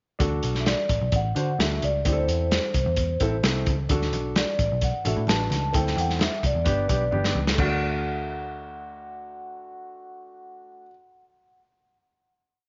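The recording has a dark, rolled-off sound with light reverb, as though heard through an old radio. This short, joyful uptempo 1960s-style soul piece moves at 130 BPM in D mixolydian. A gritty, saturated breakbeat drum kit sits up front with a tight kick and a backbeat soul groove. Beneath it, a round, foam-muted electric bass plays a syncopated line with chromatic approach notes, and a baby grand piano adds pushed chords in close voicing with grace notes. A vibraphone played with soft mallets carries the melody in ringing, mellow call phrases, with a slow motor vibrato and tape echo. Faint congas join at 3.9 seconds with a slap on two and open tones on four, and a drum fill at 7.1 seconds leads into a held final D chord from 7.6 seconds on piano, bass and vibraphone.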